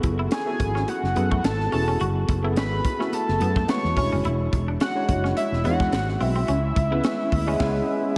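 Polished 1980s jazz-funk pop at 107 BPM in F# minor with a light sixteenth-note swing, urban and bittersweet. A worn, slightly out-of-tune tine electric piano with overdrive and chorus supports a fat sawtooth analog lead that carries the melody with vibrato and a diffuse ambient delay. Alongside them are a twangy, slightly broken-up electric guitar riff, a dark, round fretless bass up front, a crisp fusion kit with a high-tuned snare and punchy kick, and very quiet, soft-handed congas. The mix is soaked in a dreamy hall reverb until a band accent at 7.6 s closes this short excerpt.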